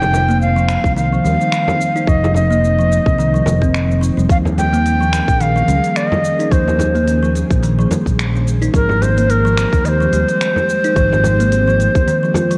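A breathy, reedy ney melody with delay opens this earthy, mystical organic downtempo excerpt in F minor at 108 BPM with a swung 16th feel, floating over a mellow, detuned pad with sidechain pumping in the background, a growly fretless electric bass up front, crisp hi-hats, finger snaps and shaker from an electronic kit, and a close, dry frame drum; a woody, ringing kalimba arpeggio joins at 0.3 seconds and a tight electronic kick at 0.8 seconds, all of it wrapped in light reverb and the warbly pitch drift of worn cassette tape until a brief break at 12.1 seconds.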